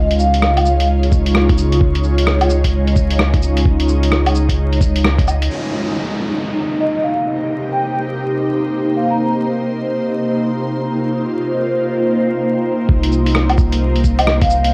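A bright, ethereal pad of detuned, chorused and phased chords sits up front in this melancholic, wistful future garage excerpt, pumping alongside a round sine sub bass while mellow soft-mallet vibraphone phrases drift through tape grit and analog delay, and a muffled, pitched-down sampler kit of cabasa, hi-hat, rim click and woodblock rides over a thumpy kick until the bass and drums fall away around 5.5 seconds for an electronic downlifter, returning at 12.9 seconds amid vinyl crackle and the character of a home cassette recording.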